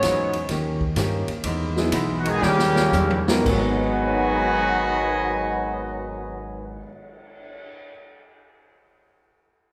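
Brassy and sultry, this short big band swing excerpt in G# minor swings at 112-130 BPM while slowing down through its first 3.5 seconds, as a tight saxophone section opens the melody before a distant trumpet section takes it up at 2.2 seconds over a clear trombone line, hollow-body archtop guitar, woody pizzicato upright bass, punchy drums with a fill, and an intimate concert grand piano entering at 1.0 second, all set in a wet recital hall.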